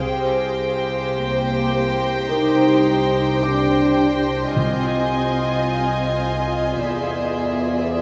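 Eerie and ominous, this cinematic passage in C minor is cut from a longer piece and moves at a slow 53 BPM in 4/4, drifting from Cm to Fm7/C and then an unsettling E7. Bowed sul tasto strings carry it: a floating, distant violin section holds the melody, a darker, intimate violin section with light vibrato sits close beneath as a second line, and a pure viola section murmurs accompaniment in the background. A shadowy cello section with a smooth top enters at 1.2 seconds, joining a rich double bass section and a detuned analog drone with slow attack and chorus in the low register. A shimmering, granular ambient pad with octave-up sparkle and its own reverb sustains chords, while a high, warm chamber violin section with vibrato and a very quiet, thick-felt upright piano add texture, the piano dropping out at 6.9 seconds. Round, soft-mallet timpani strike C3 from 4.6 seconds, and the whole passage sits in a recital hall reverb that gives it a lingering, hushed depth.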